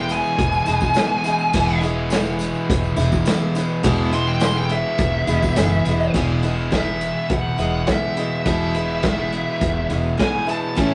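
Folk rock with a heartland rock lean, this hopeful excerpt moves at 104 BPM in a straight 4/4 around E, opening with a dark, distorted lead guitar solo that sits up front until 6.1 seconds. Beneath it, a boxy parlour acoustic guitar picks the accompaniment, a double-tracked, compressed overdriven electric guitar drives a riff, and a woody, thumpy upright bass anchors the low end. A muffled, lo-fi vintage drum kit with a punchy kick joins at 0.1 seconds, with a jingly tambourine in the background until 6.1 seconds, all captured in a rough rehearsal-room sound with tube saturation and wet studio reverb.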